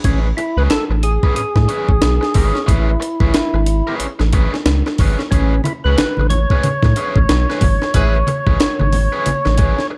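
Dark, lightly reverberant production frames a cool, hypnotic funk groove with a swung sixteenth-note feel, cut from a longer piece and sitting on a single Amaj9 chord. Gritty, pitched-up breakbeat drums with a thumpy kick and high-tuned snare sit up front beside a round, deep analog bass, while a fat, percussive tonewheel organ carries the melody through overdrive and a slow rotary speaker over a biting, picked electric guitar. Low-tuned, thick-skinned congas join in the background at 5.3 seconds, and a punchy, vintage horn section stabs briefly at 7.9 seconds as the band hits an accent.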